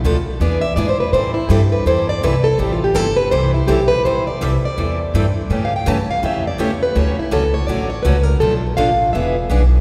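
A swung 4/4 pulse at 165 BPM drives this fiery, short jazz manouche fragment in A minor, with a pizzicato upright bass, woody and up front, and a bright, boxy parlour steel-string acoustic guitar picking the accompaniment from the first beat. At 0.4 seconds a plugged-in parlour steel-string acoustic guitar with fresh strings takes the lead, soloing up front over changes that move from E7 and Am7 through A7, Dmaj7 and Bm7b5 before returning to E7. The two repeated passages bloom in a lush, cavernous church reverb.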